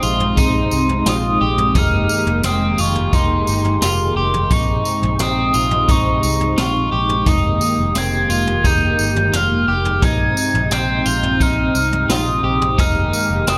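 A straight 4/4 brushed groove from a distant, roomy jazz kit with boomy kick, high-tuned snare, tambourine and toms carries this ethereal, haunting dream pop fragment, where a round, foam-muted fingered bass anchors a lush, detuned unison pad with chorus and phaser, a slightly broken-up electric guitar picks arpeggios through chorus and delay, and a hollow, woody clarinet-like synth lead sings a high melody with vibrato, chorus and delay, under light studio reverb.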